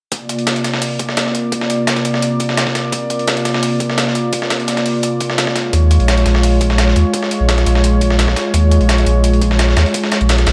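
Lush and dreamy, this liquid drum and bass excerpt sets a smooth, chorused sawtooth pad holding C9sus4 and then Eb9sus4 chords up front over a gritty, up-front dusty soul sampler-style kit with high-passed hi-hats and a medium-tuned snare in studio reverb, a pitched-up, tape-toned electronic hi-hat in the background and a thumpy, very quiet electronic kick, until a deep, round sine sub bass with tube saturation arrives at 5.7 s.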